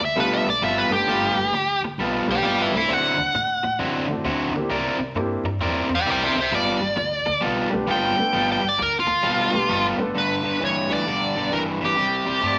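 Swung eighths at 132 BPM in 4/4 drive this soulful, rollicking blues passage in G mixolydian, cut from a longer piece, where a smooth, overdriven lead guitar solos up front until 10.2 s over a crunchy, bright picked guitar riff, a woody, thumpy pizzicato upright bass on gut strings and an open, long-sustaining grand piano with deep bass, set in a large, wet studio reverb, before a mellow, vintage harmonica with light vibrato slips in at 12.5 s.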